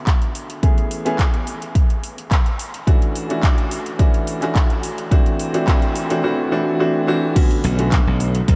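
A straight 4/4 groove drives this cosmic, groovy slice of nu-disco, anchored by a punchy, layered electronic kick drum that sits up front from 0.1 s. Beneath it, a pop drum kit adds metallic hi-hats, handclaps and crash cymbal with a tape-warm, produced sheen. A bright baby grand piano carries the accompaniment with a brilliant, natural tone and long sustain, its chords pumping under sidechain compression and trailing delay as they move through Bm7, Amaj7, Dmaj7 and C across the build-up. At 7.4 s the drop lands back on Bm7, and a glassy slap bass enters at 7.6 s, electric and direct on a low B. The whole mix is soaked in a moderate cathedral reverb, giving it a dreamy glow.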